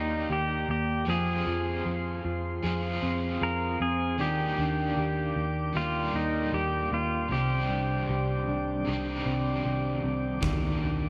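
Ethereal and dreamy, this short dream pop excerpt drifts along at 77 BPM in 4/4 with a straight feel, centred on Eb major and tuned slightly below standard pitch. A twangy, compressed pedal steel guitar carries the melody up front, played with fingerpicks and slide and touched with volume swells and delay, before it falls away at 8.1 seconds. Beneath it, a dark, fingered electric guitar spins arpeggios through lush chorus and delay, while an overdriven semi-hollow guitar adds hollow-body accompaniment with tremolo and subtle chorus. A soft, flute-like tonewheel organ holds sustained chords with audible key click and a slow rotary speaker, and a foam-muted picked bass sits round and forward in the low register. The harmony moves from Ebmaj7 to Fm, back to Ebmaj7 and on to Cmadd9 before returning to Ebmaj7, where an oversized, low-tuned kit lands a gritty, punchy burst of kick and toms at 10.4 seconds. 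The whole piece is bathed in a lush hall reverb with bright 1980s-style digital production.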